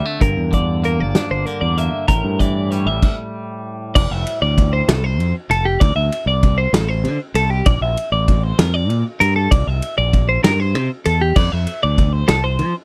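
A bright, compressed twelve-string electric guitar picks clean arpeggios up front through this restless, intricate math rock and midwest emo passage at 65 BPM in 6/8, alongside a twangy electric guitar that adds accompaniment until 4.9 seconds, just after a brief stop from 3.0 to 3.9 seconds opens a new section. A growling, overdriven fingered electric bass and a loose, roomy indie drum kit with dark cymbals, fat snare and punchy kick join them almost at once, all in a dry mix.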